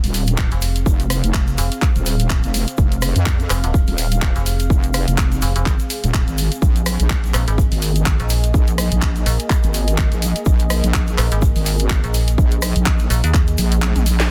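A dense, heavily limited and dry mix carries this aggressive, bouncy bass house drop at 125 BPM with a 16th-note swing, where a punchy, up-front electronic kick and a layered house kit of cracking, softly clipped snare, handclaps, hi-hat, rim click and toms drive a saturated, chorused wobble bass and an overdriven metallic FM bass, both pumping against the kick over a moody, slow-attack pad on Fm moving to Bb7sus4 at 6.6 seconds, with a grainy tube shaker in the background, until the kick drops out at 13.8 seconds for a drum fill.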